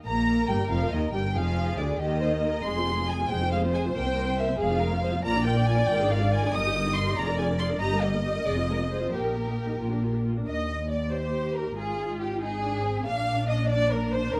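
In a brisk, straight 6/8, this lively, cheerful classical-period movement for string orchestra sets a smooth, vibrato-laden violin melody over a focused, up-front second violin line, lush viola accompaniment with expressive portamento, an even cello section and a rich double bass section, heard within a dark production in a large studio reverb and cut from a longer piece.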